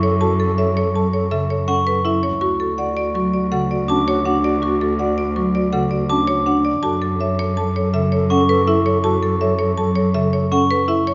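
An excerpt of urgent, hypnotic minimalist classical pattern music at 163 BPM in 6/4, opening with a bright, dry, close-miked hard-mallet marimba melody over medium-mallet marimba arpeggios, a hollow, airy alto flute second line and an up-front bowed cello bass with vibrato and portamento, joined at 0.9 seconds by round soft-mallet marimba accompaniment and at 1.7 seconds by ringing, bell-like glockenspiel arpeggios, all moving between F#m7 and D in a reverberant hall.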